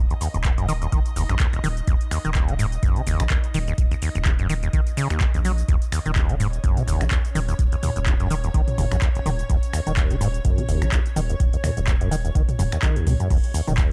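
A rubbery, resonant acid bass riff sits up front, overdriven and dark, spanning Eb1 to Gb3 over a round analog bass and a hazy granular pad, all three pumping against the sidechain in this driving, gritty acid house cut at 126 BPM in Eb minor with a 56% swing on the sixteenths. An overdriven drum machine of metallic hi-hats, handclaps, finger snaps, shaker, toms and crash cymbal enters at 0.1 seconds, joined by an overdriven electronic kick at 0.4 seconds. The sound is dry and gritty with cassette-tape character, holding on Ebm before moving to Eb5 at 13.3 seconds.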